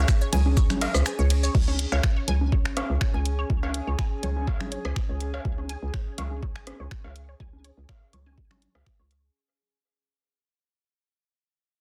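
Minimal techno at 123 BPM in 4/4, with a light 16th-note swing, this short cut from a longer piece feels quirky and cool. A hollow, bouncy FM bass sits up front with sidechain pumping, joined by an overdriven, knocking electronic kick and a garage drum kit of crash, ride, shaker, finger snaps and bright hi-hats, with soft clipping on the snare. A squelchy, resonant blip pluck carries the riff through phaser and digital delay, while electronic congas, cowbell and rim click add tape-tinged, roomy percussion with delay. Beneath them, a warbling, nostalgic pad drifts quietly with chorus, built-in reverb and its own pumping. The opening drop pulls the kick out from 1.1 to 1.5 seconds, and from 1.5 seconds the piece fades out as filter sweeps move across the bass and the arpeggiated synth, all set in light reverb within a dense, heavily limited master.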